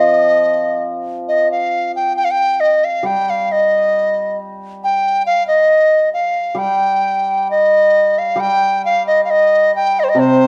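A bamboo large dizi and a hammered dulcimer begin together at once in this tender, wistful fragment of Chinese traditional chamber music, cut from a longer piece. The dizi carries the melody up front, its buzzing membrane giving a reedy, straight tone with clean tongued notes that stay between C5 and G5. Beneath it, the hammered dulcimer plays a shimmering, ringing accompaniment far lower and softer in the mix, moving between C3 and G3. The pulse sits around 67 BPM in 2/4, but the rubato feel lets the phrasing breathe freely, and the tuning rests slightly low at A4 = 439 Hz. A moderate recital hall reverb surrounds both instruments, and at 8.4 seconds the music turns to a new section that carries on until the end at 10.5 seconds.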